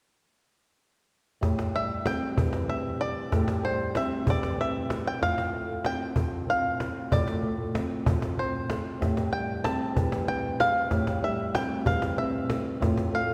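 A twangy bluegrass banjo carries the melody, played with fingerpicks in a warm, percussive upper register, entering at 1.8 seconds just after its partners. This brief cut from a longer acoustic folk piece sits in A minor at 95 BPM in a straight 3/4, and its mood is wistful and melancholic. Beneath the banjo, an old ladder-braced acoustic guitar is fingerpicked with a dark, boxy tone from aged strings, holding the accompaniment across a low-to-middle range from 1.4 seconds. A cajon played with soft hands adds a woody pulse with faint snares, its own character suggesting a small room. The harmony moves between Am7 and F/A, while a generous scoring-stage reverb lends the close, up-front trio the spaciousness of a church or concert hall.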